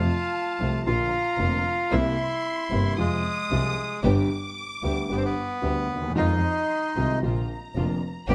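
A reedy, up-front bandoneon carries the melody in this sultry, dramatic rubato tango fragment, with a lush, distant violin section gliding above it on expressive portamento, a vintage grand piano accompanying, a dark, very quiet sul tasto string section adding soft stabs, and a bowed gut-string double bass underneath, all captured by close, detailed microphones with light reverb.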